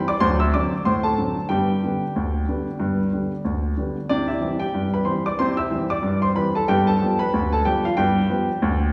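A jaunty 2/4 pulse at 93 BPM drives this cheerful ragtime excerpt, its sixteenth notes swung at 59%. A single upright piano plays solo for the full 8.9 seconds, ranging from D2 up to E6, with a woody, intimate character and audible action noise that keeps the instrument present and close. The harmony moves from D7 to G, settles on C at 4.1 seconds, and turns to G7 near the end. The piano is tuned slightly low, to A4 = 438 Hz. A lush concert-hall reverb with a 1.8-second decay and a hint of small-room ambience lends the polished playing a sense of being heard from further back in the room.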